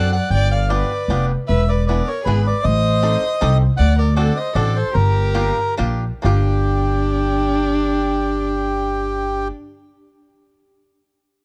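A dry, close small-room sound with a 1970s studio character frames this nostalgic, whirling musette waltz excerpt in swung triple time. A reedy, up-front bandoneon carries the melody over a warm, bowed solo violin second line full of vibrato and portamento, a bright, twangy banjo accompaniment played with fingerpicks, and a growly, woody pizzicato upright bass sitting prominently in the mix, with the music slowing from 3.8 to 6.2 seconds before a new section begins at 6.2 seconds.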